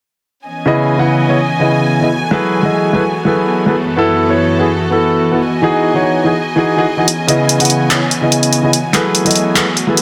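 A dense, heavily limited modern mix sits in a lush hall reverb, giving this dreamy future bass fragment a plush, enveloping glow at 145 BPM in C# minor with a swung, half-time feel. Soft-attack bowed strings with gentle vibrato and a sul tasto hush hold sustained chords from 0.5 s. Just after them, an up-front grand piano with deep bass and a tape echo plays accompaniment through a progression of C#m9, F#m11, B7sus4/F# and Emaj9. At 7.1 s a layered, electronic big-room drum kit arrives with handclaps and hi-hat.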